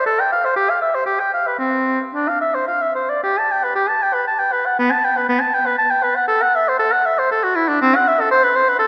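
Serene and radiant, this short passage from a longer classical work is a baroque-style fantasia for unaccompanied oboe. It moves in a flexible, rubato triple metre that hovers between 104 and 123 BPM, opening in C major before settling into G major at 3.2 seconds. The oboe sits up front with a warm tone, vibrato and a smooth top, ranging from B3 up to A5 in a graceful classical manner. A wet church reverb, lingering about 3.5 seconds, surrounds each phrase and lends the solo line a spacious, glowing halo. The single voice carries the whole 8.9 seconds on its own.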